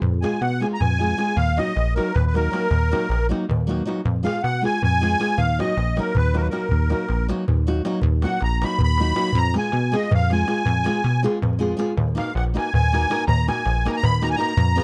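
Balkan folk in the manner of a wedding band, this fiery, bittersweet passage, cut from a longer piece, races along in 7/8 at 318 BPM counted in eighths, in Eb minor, and pushes faster throughout. A reedy musette accordion with a shimmering musette tuning carries the melody up front, taking a solo for the whole stretch from 0.2 seconds. Beside it, a bright, classical nylon-string guitar with fresh strings is fingerpicked as accompaniment, also close and forward. A punchy, funky analog bass with a sawtooth and square-wave edge, a fast-attack filter pluck and a moving notch drives the low end with decaying notes, while a clay-shell darbuka with natural skin, struck by hard hands, sits in the background with its own live-room warmth. The harmony swings between Fdim and Ebm, all captured in a dry, close studio sound in a 1970s style.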